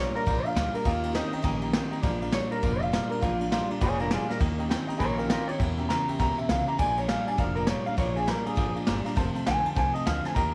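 A swung 202 BPM groove in 4/4 drives this rollicking, retro rockabilly excerpt in Bb mixolydian, with soft brushes on kick, snare and ride coming in at 0.2 s to join a thumpy, woody upright bass. Up front, a twangy lead guitar through a small old amp carries the melody with harmonic tremolo and tape echo, while a second, compressed guitar at the edge of break-up plays a low riff. Behind them sit a fresh-stringed, full-bodied steel-string acoustic and a slightly detuned upright piano over a Bb7, Eb7, Edim7 and F7 progression, all in a small room with light reverb.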